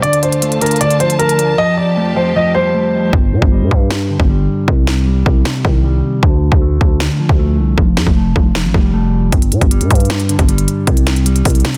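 Hard-clipped kicks, a sharp snare and crisp hats drive this brooding, hard-hitting half-time trap excerpt, where a dark, vintage grand piano melody with tape echo and lush bowed strings play over a clean, fingered, low-passed electric guitar until 3.1 s, when a growling, buzzy 808 bass enters, the hi-hats are muted and the guitar gets a filter sweep until 9.3 s, within a dense, dry, heavily limited master.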